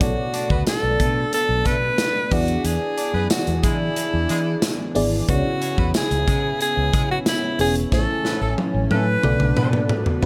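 Nostalgic yet urgent, this 1980s-style pop excerpt in B dorian at 91 BPM features a bright, vibrato-laden alto saxophone melody with tape echo up front, a lush, dreamy FM electric piano with a soft pad layer and a smooth, detuned analog pad both washed in chorus and phaser, a fretless electric bass, tight horn-section stabs, and a punchy modern studio drum kit with gated reverb and tambourine that closes on a drum fill from 7.9 seconds over chords moving from Bm7 through E7, C#m7 and Amaj7 back to Bm7.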